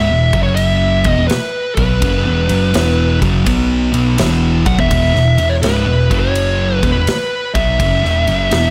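A compressed, up-front fuzz lead guitar with digital delay leads this ominous, hypnotic stoner and doom metal excerpt at 83 BPM in a swung 4/4, its dark melody moving between B4 and F#5 over two heavy, distorted rhythm guitars grinding a low riff in the background and a round, amped, overdriven picked bass, while a big acoustic rock kit enters at 0.3 s with a punchy kick, medium-tuned snare and bright ride cymbal, all set in a light studio reverb.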